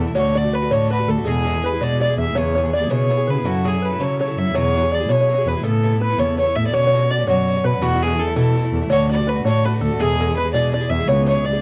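In a rollicking, lively 6/8 Celtic jig with a straight feel, this dry, close, 1970s-style studio fragment of celtic folk puts a dark, nasal, woody fiddle up front on the melody with light vibrato and portamento, beside a veiled, muted cello bowing the bass, while a plunky, fingerpicked open-back banjo plays a twangy second line in the background and a bright, metallic Irish bouzouki picks double-strung accompaniment.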